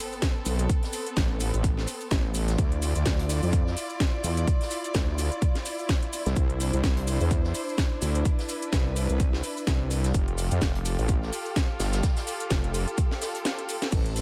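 Gritty and swaggering, this bass house excerpt at 127 BPM rides a swung 16th-note groove, with a punchy, up-front electronic kick and a house kit of cracking snare, metallic hats and crash anchoring a heavy, saturated wobble bass with chorus and sidechain pumping, while a rich bowed chamber string section holds pumping sustained chords through Amadd9, Dmadd9, Cadd9 and Fadd9. An impact opens at 0.0 seconds, with a very quiet sub drop joining at 0.1 seconds, grainy maracas and a faint acoustic kit with a rolled-off top sit in the background, and the kick drops out for a drum fill at 13.5 seconds.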